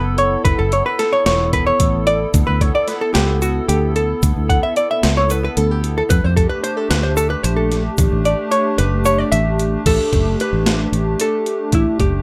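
A dark, clean hollow-body jazz guitar sits up front and solos through the first 9.9 seconds of this intricate, driving progressive instrumental in 7/8 at 224 BPM (eighths), cut from a longer piece in A mixolydian over F#m7, Dsus2, F and Asus4. Beneath it, a round, foam-muted fingered electric bass and a gritty, compressed breakbeat sampler-style kit with a thumpy kick, medium-tuned snare, hi-hat and crash drive the band, and the kick and snare drop out at 8.8 seconds. A mellow, flute-like pad with chorus sustains softly behind them, a grainy egg shaker enters in the background at 2.3 seconds, and light reverb rounds out the sound.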